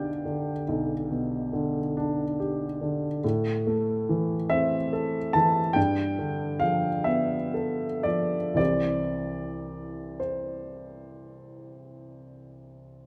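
Nostalgic and tender, this fragment of a romantic classical nocturne in a rubato 12/8 features a solo upright piano, woody and intimate with its action noise audible up front, moving through G/B, Am, G9 and finally C at 8.6 seconds, set in a moderate recital-hall reverb captured by close, detailed microphones.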